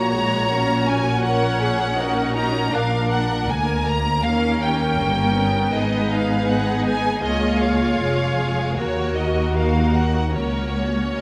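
A tender, slow romantic movement for string orchestra opens with every section sounding at once, the violins carrying an up-front, smooth melody with vibrato high in their range while a second violin line moves beneath it in a more focused voice. The violas fill in the accompaniment with a clear, intense tone and light vibrato. Underneath, a close, expressive double bass section supplies the bass with vibrato and portamento, and the lush cellos sit in the background in a low register. At 80 BPM in 4/4 with a rubato feel, the music unfolds in F# major, tuned to A4 = 444 Hz, drifting through chords such as D#7, G#m and D#m before settling on F#/C# at 10.4 seconds. A wet scoring-stage reverb with a 1.8-second tail surrounds the strings, giving this 11.2-second cut from a longer piece a spacious, tender glow.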